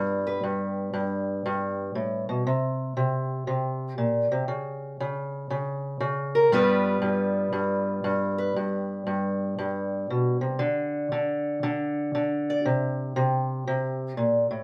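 Laid-back and gritty, this short blues cut from a longer piece finds a lone fingerpicked steel-string parlour guitar, dark and boxy and up front in light reverb, swinging at 118 BPM in G mixolydian through G7 and Bbsus2 chords with open unaccompanied gaps, the last arriving at 10.6 seconds.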